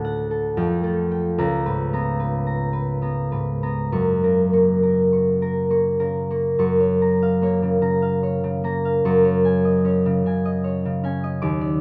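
Dreamy and graceful, this short classical passage for solo concert harp drifts in 3/4 at a rubato pace of roughly 65 to 79 BPM, settling in Gb major. The harp plays alone throughout the 11.8 seconds, ranging from Db2 up to D6 with a warm, ringing, thumb-plucked tone placed up front. Close, detailed microphones catch the instrument's acoustic character while a moderate recital hall reverb lends a soft halo around each note. The harmony moves from D and Fadd9 through Db5 to Gb, then at 6.6 seconds the opening idea returns over Gbmaj7 before closing on Ebm11/Gb at 9.0 seconds. Cut from a longer piece, it feels like a gentle, suspended moment within a larger work.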